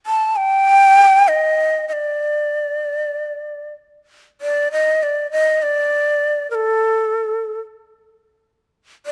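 Calm and austere, this brief excerpt of Japanese traditional music unfolds in a free, rubato 2/4 at roughly 47-53 BPM, with a solo breathy shakuhachi playing from 0.1 to 9.1 seconds between A4 and A5, its end-blown bamboo tone carrying a soft attack and vibrato, captured up front by close, detailed microphones with light reverb as a new passage begins at 4.4 seconds.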